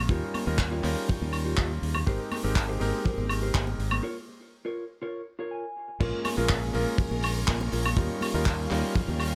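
Groovy and sleek, this cut from a longer nu-disco track moves at 122 BPM in Bb dorian over chords such as Eb9, Abmaj9 and Bbm7. A punchy, up-front fingered bass with an envelope filter and tube saturation drives beneath a tight, dry kick, a damped 70s kit with hi-hat, handclaps, woodblock and crash, and very quiet, high-tuned congas. A vintage electric grand piano with a clangy low end carries the accompaniment through sidechain pumping and dub echo, while a dark, compressed electric guitar plays a riff with subtle chorus and dub echo. A break arrives at 4.0 seconds with a clean guitar fill at 5.3 seconds, and at the 6.0-second drop a lush string machine with ensemble chorus and sidechain pumping enters in the background.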